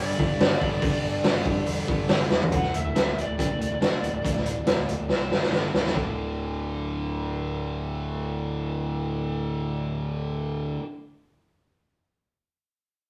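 An energetic, anthemic burst of hard rock opens with a lo-fi lead guitar through a small cranked amp carrying an overdriven melody over a stack of picked riffs. Beneath it, a crunchy overdriven guitar sits in the background alongside a tight, bright distorted guitar. A very quiet, double-tracked second distorted guitar drops out at 2.3 seconds, just as the drums play a fill. A raw garage drum kit kicks in almost at once and sits up front, with a boomy kick, a medium-tuned snare, gritty saturation and a rolled-off top. A growly, punchy fuzz bass fingers the low end throughout, while the chords move from G to D5. The lead melody stops at 5.5 seconds and the drums follow at 6.1 seconds, leaving the guitars and bass to ride on in a rough rehearsal-room sound with tube saturation, small-room ambience and light reverb.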